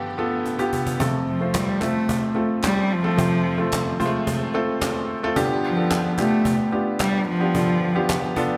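A straight 4/4 pulse at 110 BPM drives this hopeful piano-driven pop excerpt in F major, where a woody, up-front upright piano plays throughout, a clear, lush string section holds background chords over G7 for the first second while a snappy, distant cajon fill enters at 0.5 s, and from 1.3 s a dark, nasal solo cello carries the melody with vibrato, portamento and digital delay over crisp background handclaps, all set in a lush hall reverb with bright 1980s-style digital sheen.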